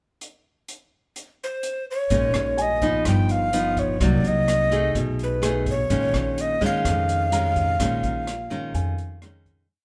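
Recorded as a band playing live in one room, with a moderate large-studio reverb and a rolled-off top end, this brief, wistful bossa nova in Bb minor moves at 126 BPM in a straight 4/4. An open acoustic jazz kit with a boomy kick, hi-hat and rim click sets a soft groove from 0.2 s. A breathy, close-miked tenor recorder with vibrato, crisp chiff and an unsteady, up-front tone sings motif-based song phrases, while from 2.1 s a fingerpicked nylon-string guitar with finger squeak plays thumb bass and syncopated plucked chords over a woody, thumpy pizzicato upright bass in a root-and-fifth two-feel. A dark, mellow baby grand piano adds scattered notes in the background, and the piece fades out from 7.8 s over melancholic chords such as Bbm7, Gaug7 and Cm7b5.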